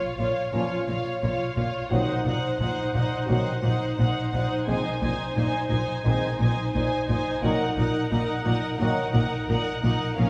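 A rich, distant violin section carries the melody with smooth vibrato, joined by a soft-attack second violin line and an even, lush viola accompaniment in this cinematic orchestral build-up at 87 BPM. It is cut from a longer piece. Cellos and woody double basses hold a low Bb bass from 0.2 seconds, while bright trombones and mellow French horns sustain chords in the background from 0.5 seconds over a relentless, epic progression. The ensemble sits in a wet recital-hall reverb with a soft top end.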